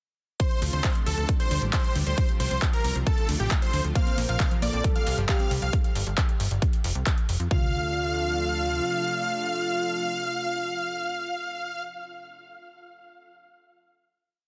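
This short, emotional uplifting trance piece in D minor at 135 BPM opens straight into a soaring drop. A huge, euphoric supersaw lead carries a repeating riff over a thick unison pad with gritty 12-bit character, joined by a punchy, overdriven four-on-the-floor kick, metallic hats and claps from a big-room kit, and a galloping, funky sawtooth bass, with sidechain pumping on the lead, pad, bass and hats. From 4.0 s a velvety, gliding second lead adds its own riff with chorus and delay while a background unison pluck spins a six-step arpeggio that drifts against the bar; the drums drop out at 7.5 s, and the piece settles onto a final Dm7 chord held by the leads and pad in a dry, dense, heavily limited mix.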